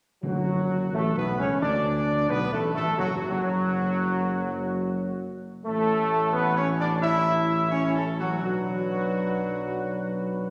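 Majestic and triumphant, this classical brass passage in D major moves at a stately 88 BPM in 4/4, cut from a longer piece, with a clear trumpet section carrying the melody over sustained chords from a very quiet, smooth French horn section and an up-front, warm trombone section, all with light vibrato. A dark, up-front tuba anchors the bass, while timpani struck with hard mallets sound an articulate D3 only at the opening, from 0.2 to 1.2 s. The harmony moves from D/F# to A at 5.7 s and Bm at 8.4 s, and a wet scoring-stage reverb with a 1.9 s decay gives the ensemble a grand, spacious sound.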